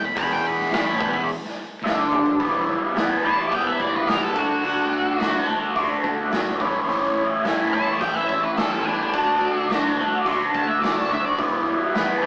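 A bright, double-tracked garage guitar riff sits up front with overdrive and phaser, while a dark octave-fuzz lead guitar with wah opens on a solo over an E7sus4 before a drum fill at 1.8 seconds brings in an Em–D–A–D–Em progression, all at 107 BPM in E dorian, with a growly fuzz bass in the background and a punchy, smooth rock kit in a stone-room reverb giving this gritty, smoky blues and southern rock excerpt a rough rehearsal-room, small-speaker character.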